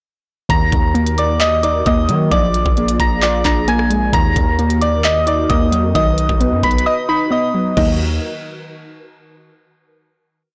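A half-time trap beat with a knocking kick, crisp hats and fast hi-hat rolls, plus handclaps, rim clicks and crash, drives this dark, menacing hip hop piece, while a distorted, saturated 808-style bass follows the kick with long sliding sub notes. Up front, a soft, mellow FM synth bell with chorus loops a melody doubled in octaves, over a lo-fi, detuned pluck arpeggio in eighths with a filter sweep and a hollow, airy, flute-like pad holding sustained chords under ensemble chorus. The drums mute from 6.9 to 7.8 seconds before a final chord rings from 7.8 seconds, and the whole mix sounds dry, blown-out and overdriven.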